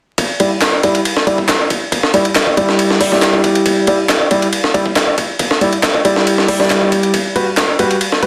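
A dense, heavily limited mix with vinyl crackle and a moderate digital room reverb frames this swaggering, funky breakbeat excerpt at 138 BPM in E minor, where a gritty, compressed sampler-style drum kit with a thumpy kick and high-tuned snare sits up front, a brilliant baby grand piano plays stabs through a low-pass filter sweep and tape echo over Em7 moving to Gmaj7 at 7.1 seconds, and dry, overdriven analog handclaps sit very quietly beneath.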